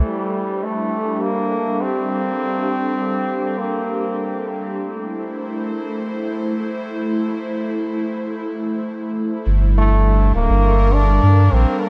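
A dark, lightly reverberant production frames this hazy, spacious ambient dub fragment in free time and G dorian, tuned to A4 = 438 Hz. An airy, breathy pad with chorus holds slow-blooming, detuned chords over Gm and Am throughout, while a clear, distant trombone sings a classical-style solo melody through dub echo, pausing after 4.5 seconds and returning at 9.8 seconds. At 9.5 seconds a deep, round sine sub bass arrives on the return to Gm and sits up front as the loudest layer in the mix.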